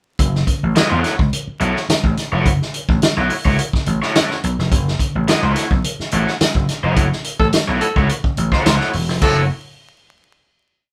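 A straight 4/4 funk groove at 106 BPM in F# dorian sets a sly, funky mood, as a vintage drum kit with a punchy kick and rolled-off top plays syncopated patterns with ghost notes. A slap bass riff is anchored on the downbeat with muted ghost notes and chromatic approach notes, and bright, overdriven garage guitar chords come in clipped and up front from 0.8 s. A raspy, growling tenor saxophone with vibrato punches in at 7.4 s during a band accent, all captured as a live room take with light reverb and vinyl crackle before the final chord at 9.2 s.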